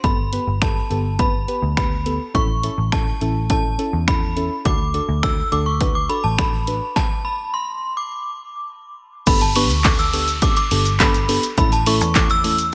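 A punchy, tape-warm analog drum machine with crash, snaps, handclaps, hi-hat, kick, shaker and snare drives this upbeat, carefree dance-pop excerpt at 104 BPM, beneath a chiming FM synth melody with ensemble chorus, deep mellow chord stabs and a dark, round muted picked electric bass, both pumping to the sidechain, as a stop hits at 7.0 seconds, a background downlifter enters at 9.3 seconds and a barely audible, hollow group handclap appears at 9.8 seconds over chords moving from Gadd9 through A and D in light digital ambience.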